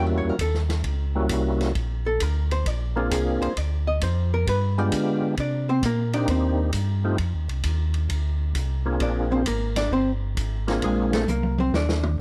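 Soul jazz organ trio in a swinging, greasy 4/4 at 132 BPM in Bb mixolydian, this short excerpt has a percussive, lightly overdriven tonewheel organ with slow rotary speaker and chorus vibrato carrying the melody until 11.2 seconds, a hollow-body archtop guitar soloing throughout with a dark, clean, picked tone, a mellow, round second organ holding down the bass with key click and its own slow rotary speaker, and a vintage acoustic drum kit with dark cymbals and a punchy kick entering at 0.4 seconds and closing with a fill from 11.3 seconds, all set in a dusky, lightly reverberant production over chords moving from Edim7 through Bb9, Dm7, G7b9, Cm7 and F5 back to Bb9.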